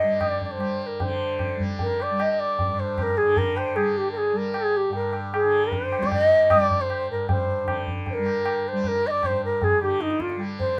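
Hindustani classical music in raga bhairavi on G, introspective and solemn at 153 BPM in a straight 4/4, this short fragment from a longer piece puts an airy bamboo bansuri up front, its melody shaded with vibrato and a soft attack, over a buzzing, shimmering tanpura drone that is softly plucked, while a high-tuned, ringing tabla enters at 0.2 seconds with a small-room sound, all under light reverb.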